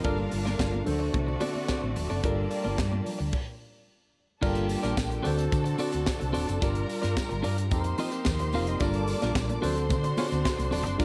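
A driving, glamorous disco groove at 110 BPM in G minor, this excerpt rides a tight funk drum kit with a high-tuned snare and a dark, round hollow-body bass up front, while a barky, lightly overdriven tine electric piano with phaser and a clean, picked electric guitar fill out the Gm7 and D7 changes. Lush bowed strings hold sustained chords in the background as a bright, intense violin section carries a second line from a distance, with very quiet congas in the opening seconds and again from 8.8 s. The band hits a stop from 3.3 to 4.4 s, after which a faint, jingly tambourine joins for the rest of this dry cut.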